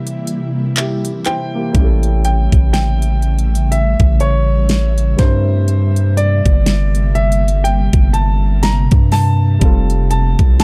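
A dark, close production with little reverb frames this dreamy, smooth contemporary R&B excerpt at a slow 61 BPM with a swung sixteenth feel, where an intimate concert grand carries the melody through a digital delay, its action noise audible, over a softer baby grand accompaniment and an ethereal, detuned pad shimmering with chorus, tremolo and its own reverb. From the opening moments, a knocking, layered pop drum kit with fat snare, crisp hats and handclaps sits up front, and after a brief opening break it is joined at 1.8 seconds by a deep, sine-like 808 bass with long decaying notes. The harmony moves from C7 to A7, then C7/G, settling on Fmaj7 at 9.6 seconds.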